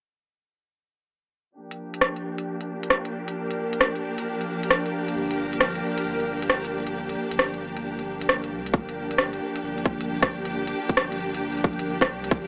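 Swung hi-hats and rim clicks from a crisp, overdriven electronic kit drive this ghostly, melancholic future garage excerpt, with dark, woody bowed strings holding a pumping Gm7 under a filter sweep from 1.6 s, a reversed, detuned granular texture drifting in the background, a round sine sub bass entering at 5.1 s, and a tight electronic kick joining at 8.7 s, heard through a gritty, small-speaker sound with light reverb.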